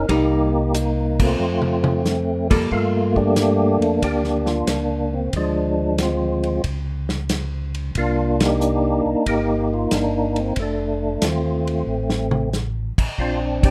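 Smoky and soulful, this soul jazz organ trio excerpt swings in G minor at 92 BPM, with a fat, percussive tonewheel organ carrying the melody through key click, chorus vibrato and a slow rotary speaker. A second, round and dark tonewheel organ holds down the bass, while a clean, hollow-body archtop guitar adds picked accompaniment only until 2.7 seconds. An up-front acoustic drum kit with a tight kick and dark cymbals joins in band accents and drum fills, all set in light reverb.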